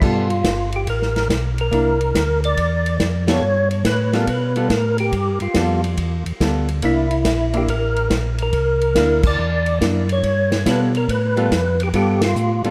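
A fat, percussive tonewheel organ with key click, chorus vibrato, slow rotary speaker and delay carries the melody up front in this greasy, bluesy soul jazz organ trio excerpt, swinging over dark, clean picked hollow-body archtop guitar, a mellow, round organ bass line and a distant, roomy soul drum kit with dark cymbals, all bathed in a dreamy plate reverb, with band accents hitting at 3.2, 9.2 and 12.2 seconds.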